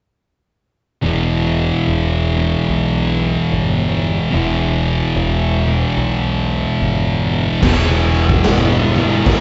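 Stoner and doom metal at 73 BPM in E minor, this ominous, brooding excerpt heard live through a club PA opens on an E minor chord with two thick fuzz guitars, a dark one up front and a warm one in the background with slapback echo, riffing over a growling overdriven picked bass, until at 7.6 seconds a very quiet, bright, double-tracked distorted guitar and a punchy, up-front garage drum kit with crash, kick and medium-tuned snare join in, all under light reverb and a muffled, dull top end.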